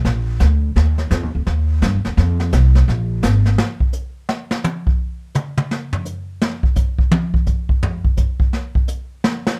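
Jazz piano trio music, sophisticated and swinging, this short excerpt moves at a brisk 170 BPM in 4/4 with a lilting swing feel in Eb major, tuned slightly low to A4 = 436 Hz. A pizzicato upright bass with steel strings sits up front, its woody, growly tone carrying the low end from Ab1 to G2 until 3.6 seconds. A brushed jazz drum kit plays throughout, using brushed snare, hi-hat, kick, a medium-tuned snare and toms. It has an airy, polished small-room sound and a boomy kick. From 3.6 seconds the drums take over alone for a solo that runs to the end of the clip. The production is dark and warm, with little reverb.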